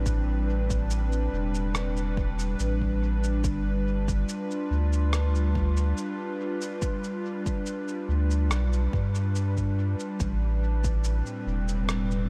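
A light reverb and digital ambience give this short ambient dub excerpt a hazy, deep atmosphere, cut from a longer piece and moving at 71 BPM in a straight 4/4. An airy, breathy pad with a slow attack and long release holds sustained chords up front, its detuned, wave-folded tone thickened by chorus. Beneath it, a round sine sub bass with a fast attack sits up front and carries the low end. An electronic kick drum, layered and deep, plays until 11.0 seconds, while a muffled, pitched-down shaker and rim click with a tape-warm, compressed character run through dub echo to the close at 12.3 seconds. The harmony rests on Am11, moves to G7 at 3.4 seconds, and returns to Am11 near the end.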